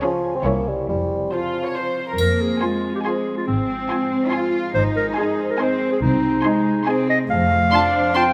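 Sneaky and mischievous, this whimsical F minor film cue in 3/4 at 141 BPM sets veiled, con sordino violin sections on the melody and a second line over muted violas, a distant cello section and a close double bass section, with a warm concert harp ringing out arpeggios, a mellow solo bassoon up front until 2.0 s, a solo clarinet taking a second line from 2.2 s, and a bright triangle touch, all in a moderate concert hall reverb.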